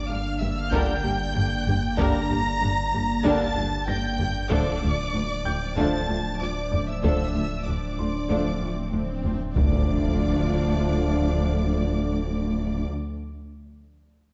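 A tense, brooding hybrid orchestral and electronic film score in D minor at 95 BPM, where two lush bowed violin lines, rich violas, dark cellos and a studio double bass section sit over a deep, punchy sub bass with a pitch-drop attack and a warbling, lo-fi pad carrying chorus, phaser and built-in reverb. French horns and trombones enter with sustained chords at 0.7 s alongside a heavy-stick taiko ensemble, while a mellow grand piano with tape echo adds texture in the background from 3.9 s. An electronic swell builds to an impact at 9.6 s, all set in a moderate scoring-stage reverb with a dark, warm production as the harmony moves from Gm to Dm.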